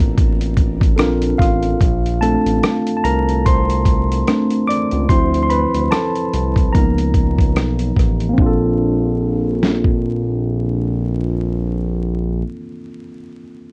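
A worn, slightly out-of-tune tine electric piano, softened by cassette tape and a low-pass filter, takes a solo from 1.8 to 8.4 seconds in this mellow, cosy lo-fi hip hop clip cut from a longer piece. A very quiet, shimmering string machine with phaser and ensemble chorus opens beneath it and stops at 1.8 seconds, while a smooth, nasal synth bass with vibrato sits up front and a brief, close and dry finger snap slips in. The gritty, sampler-style drum kit brings a thumpy kick, rim click, hi-hat and medium-tuned snare with 12-bit crunch until 10.0 seconds, all within a dark, warm mix dusted with vinyl crackle and light reverb.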